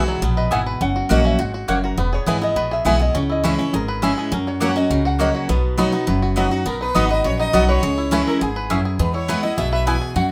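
A bright, full-bodied picked steel-string acoustic guitar sits up front in this lively, rustic bluegrass excerpt at 205 BPM in B major, joined by a thumpy, woody pizzicato upright bass, a twangy fingerpicked banjo and a nasal, metallic slide lap resonator guitar sharing the melody, a double-strung mandolin adding stabs, and a clear, earthy bowed fiddle with light vibrato entering on a second line at 6.7 s, the whole band set in a moderate studio reverb.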